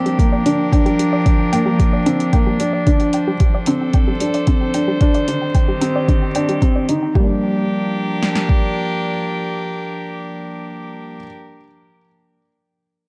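Piano and strings electronica in G minor at 112 BPM, melancholic and hypnotic, where a felt-muted upright piano repeats a mellow, boxy riff over up-front string quartet chords played sul tasto with a floating, smooth top, moving through Gm7, Dm7 and Cm. A deep house drum kit with a deep kick and punchy, overdriven snare drives the groove alongside a gritty electronic hi-hat, while a soft, round, detuned pluck sits in the background with sidechain pumping, tape colour, chorus and delay. The hi-hat drops out at 7.0 seconds, the pluck at 7.4 seconds and the drum kit at 8.6 seconds, leaving piano and strings to carry the dark, lightly reverberant passage to its cut at 11.4 seconds.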